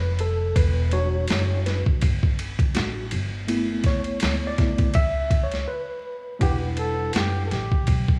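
Dry and dusted with vinyl crackle in a small room, this mellow, smoky jazz-hop excerpt swings at 82 BPM in E dorian over Em9 and G6, with a worn, slightly out-of-tune tine electric piano taking a lightly overdriven, up-front solo above woody pizzicato upright bass and a gritty, pitched-down, compressed sampler-style boom bap kit with a thumpy kick, until a break at 5.7 s gives way at 6.4 s to a soft-attack jazz flugelhorn melody with vibrato and slapback echo.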